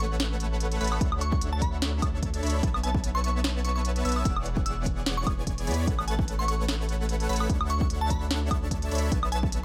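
A saturated sub bass sits deep, thick and up front, pumping under huge detuned supersaw chords and a glassy, crystalline wavetable pluck melody that rings high with chorus and dub echo in this lush, euphoric future bass excerpt at 148 BPM in A major, with a half-time feel and 16th-note swing. A trap kit supplies a sharp snare, crisp hats and woodblock, joined at 1.0 seconds by a punchy, overdriven electronic kick in a small room, while a barely audible impact opens the first second. The chords move through A69, Dmaj7, B7sus4 and E13 in a dry, close mix.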